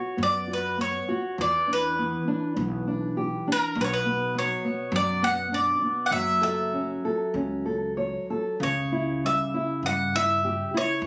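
Captured on a phone in a small room, this recording carries a moderate, short reverb and a sense of studio ambience around the players. It is a fado-style ballad in 4/4, played with a rubato feel, passionate and full of longing, and it is cut from a longer piece. Up front, a bowl-back mandolin carries the melody with a bright, picked tone from its doubled strings. Close beside it, a nylon-string guitar gives a dark, small-bodied accompaniment, plucked with the thumb. A pizzicato upright bass strung with steel enters at 0.2 s, adding a woody, warm low line at a quieter level in the mix. The harmony moves from Bsus2 through E7(no3), Bm and F#m7 before arriving at C#dim near 8.6 s.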